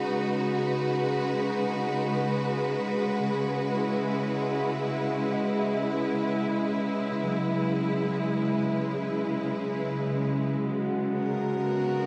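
A dark, spacious wash of reverb surrounds this serene ambient fragment, cut from a longer piece and floating in free time. Up front, a clear, lush string section sustains bowed chords with gentle vibrato, its close, focused ensemble tone carrying the harmony from B6/C# to C#m7. Far beneath it, very quiet muted synth keys spin soft, warbling arpeggios with a vintage, intimate character and a faint chorus shimmer. At 10.6 seconds a glass harmonica enters with pure, airy tones that slowly bloom and beat against one another as the chord shifts to G#m7/C#. The effect is calm and suspended, the strings glowing up front while the keys and glass add an ethereal haze.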